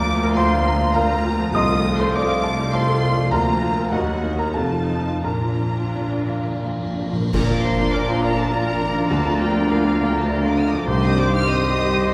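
In a rubato 3/4 that moves between 84 and 106 BPM, this brooding, passionate romantic movement for piano and orchestra in Bb major opens with an intimate, up-front concert grand, its deep bass and audible action noise carrying the melody alongside a distant, smooth violin section, with a lush second violin line with expressive portamento, and violas, cellos and double basses bowing quietly beneath. A cymbal swell with clash cymbals and concert bass drum arrives at 3.3 seconds, and round, soft-mallet timpani play a fill from 5.3 seconds. At 7.3 seconds a band accent brings in an airy flute, a mellow oboe and a faint, roomy clarinet on second lines, dark horns and quiet trombones sustaining chords, and clear trumpet stabs, all set back in a reverberant scoring stage.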